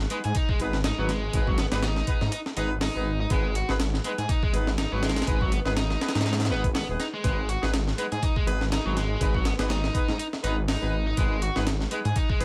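A thick, menacing detuned saw bass opens this energetic, raw breakbeat excerpt, its beating tone sitting up front with a fast attack and sustained notes. At 0.1 seconds a sampler-style breakbeat kit joins, compressed and pitched up, with a thumpy kick, a high-tuned snare, hi-hat and a gritty, tape-warm character that also sits up front. A biting overdriven electric guitar enters at the same moment with a picked riff, roughened by vintage 12-bit sampler grit and trailed by dub echo. A bright jazz-style horn section adds ensemble stabs with light vibrato, also carrying dub echo. The swung sixteenths give the groove a loose push, and the dry mix, with little reverb, keeps the whole piece close and raw as it rests on a single minor chord throughout.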